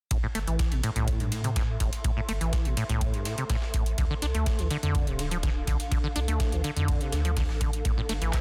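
A dense, heavily limited modern mix with little reverb carries this gritty, driving acid house fragment, built on a squelchy, resonant sawtooth acid bass riff that sits up front with delay and sidechain pumping over a round, dark analog bass that also pumps. An electronic kick with a deep, tape-warm thump anchors a booming analog drum machine's handclaps and metallic hats, while a compressed breakbeat sampler-style kit of hi-hat, ride cymbal and snare sits in the background, its snare, hats and cymbals high-pass filtered and its hats and cymbals pumping. From 0.4 s a blurred, detuned granular cloud pad drifts in with its own reverb and sidechain pumping, over chords moving from Am7 to Dm7 and back.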